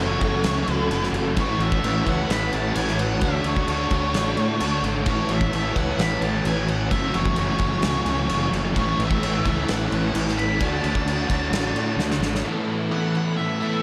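Hazy and dreamy, this 130 BPM shoegaze and dream pop passage in A major moves at a steady, straight 4/4, cut from a longer piece and bathed in a lush hall reverb. An octave-fuzz lead guitar carries the melody over a dense bed of picked riffs: a thick, dark fuzz guitar with lush chorus sitting in the background, plus two very quiet overdriven guitars, one semi-hollow and one double-tracked with a biting edge. A jumbo twelve-string acoustic adds shimmering, octave-doubled arpeggios, while a vintage organ-string ensemble holds mellow, soft-attack chords with ensemble chorus behind it all. Underneath, a fuzz-laden fingered electric bass and a loose indie drum kit with punchy kick, dark cymbals and a pumping room sound drive the harmony through F#m9, A69 and Dmaj7. A drum fill at 12.0 seconds marks the point where bass and drums stop at 12.4 seconds, leaving the guitars and organ to ring out on an Asus2 chord until 13.8 seconds.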